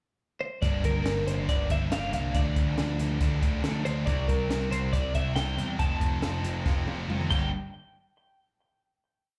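A bright, twangy twelve-string electric guitar opens at 0.4 s with a compressed, motif-based melody under slapback echo. At 0.6 s a restless, moody indie rock verse in G dorian kicks in at 139 BPM: a sludgy, double-tracked distorted guitar strums an overdriven riff, a growling bass drives eighth notes, and a compact cocktail kit lays down a big rock groove with a punchy kick, high-tuned snare and dark cymbals over a Gm, Dm, C, F progression. A drum fill at 6.7 s leads into a final hit, all heard as a dry live gig through a club PA.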